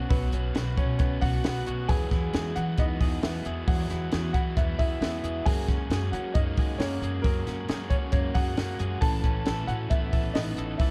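A dark, mellow upright piano with audible action noise and slapback echo carries the melody of this breezy, bright jangly indie pop piece at 135 BPM, joined by a ringing soft-mallet vibraphone with motor vibrato in the background, a reedy, worn, slightly out-of-tune electric piano kept very quiet, a crunchy overdriven guitar, twangy arpeggios from a clean, compressed direct-recorded electric guitar also given slapback echo, woody pizzicato upright bass, and a dry cocktail drum kit with a punchy kick and high-tuned snare sitting up front from 0.1 s, over Bsus2, Eadd9, F#add9 and Aadd9 chords in a light reverb.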